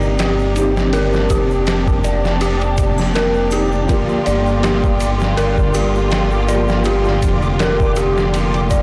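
A deep, rumbling detuned saw bass sits up front in this brooding, melancholic trip hop excerpt, its saturated sawtooth tone beating as it holds low between F1 and G1. Around it, a felt-muted upright piano plays soft, boxy accompaniment in the background with tremolo, tape echo and 12-bit sampler grit, while a dark symphonic string section sustains lush, woody chords that feel distant. An eerie, inharmonic FM bell traces detuned arpeggios through chorus and digital delay, and a reversed, granular texture swells dreamily on a high D from 0.2 seconds. At that same moment a pitched-down, sampler-style drum kit enters at a slow 81 BPM with a gentle 16th-note swing, pairing a thumpy kick and medium-tuned snare with ride cymbal, while egg shaker, triangle and group handclap stay faint in the background. The harmony moves from Eb6/G to Gm7 at 3.9 seconds in G minor, and the whole mix comes across blown-out and overdriven in a small, lightly reverberant room.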